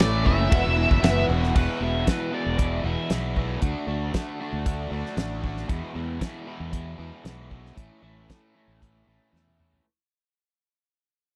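Confident and swaggering, this classic rock passage at 116 BPM in 4/4 rides a straight E mixolydian groove, cut from a longer piece and recorded dry and close in a 1970s studio style. An up-front, damped 70s drum kit with a fat snare, tight kick and dark cymbals plays alongside the fingered electric bass, while a bright overdriven electric guitar and a raw garage guitar, treated with overdrive and phaser in the background, hammer out riffs throughout. In the opening moments a dark octave-fuzz lead guitar sings a short melody through wah and slapback echo, accompanied briefly by a very quiet picked steel-string acoustic, sustained chords from a shouting, lightly overdriven tonewheel organ with key click and slow rotary speaker, and a second double-tracked garage guitar. At 1.6 s an overdriven slide guitar played with fingerpicks adds a brief second line. The chords move from A and Esus2 into E, D and back to E and A as the passage fades out, closing on a drum fill at 9.3 s.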